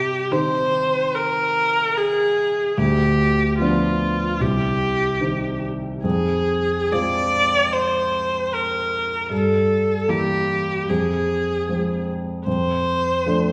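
Serene and tender, this romantic classical fragment for viola and grand piano, cut from a longer piece, moves at a rubato 74 BPM in 4/4. A rich, expressive viola carries the melody with vibrato, portamento and soft attacks over a dark, mellow grand piano whose action noise is audible. Both instruments sit up front in a reverberant recital hall, tuned to A4 = 438 Hz, as the harmony turns through C minor and F minor.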